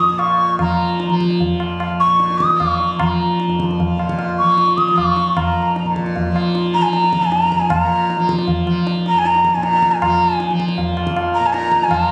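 Introspective and solemn, this short excerpt of Hindustani classical music is cut from a longer piece and set in raga Malkauns on F, moving in 3/4 at around 154 BPM and speeding up across its 12.1 seconds. A breathy bamboo bansuri carries the melody up front, its tone marked by vibrato and tongued articulation as it ranges from Ab5 to just above Eb6. Beneath it, a tanpura sounds a softly plucked, buzzing drone between F2 and F3, its shimmering resonance also placed close to the listener. High-tuned tabla with a short ring supplies the percussion at a lower level, carrying a live-room character. All three parts play throughout, with the opening passage giving way to a new section at 7.7 seconds. The sound sits in a moderate recital-hall reverb captured on a phone in the room, with added club reverb and compression.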